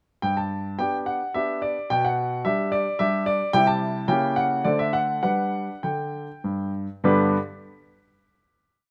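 Close, detailed microphones and a light reverb give this complete classical-period sonatina a polished, up-front sound. A clear baby grand piano plays solo in G major and 3/4 at 99-112 BPM with a rubato feel, its single-line melody carried over bass and chords on the beats in a playful, elegant theme. The harmony moves from G through C and D7 back to G, and the piece closes on a final chord from 7.0 seconds, with the piano's last notes sounding at 7.4 seconds.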